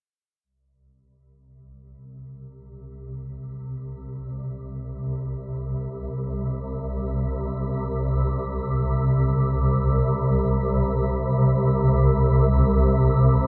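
Vast and ominous, this free-time ambient fragment of a longer piece gradually fades in a tense, evolving synth drone, entering at 2.0 seconds and sitting up front between C2 and C3, whose detuned sine tones, granular grain and lush chorus swarm under slow attacks and long releases within a huge, reverb-soaked dreamy space.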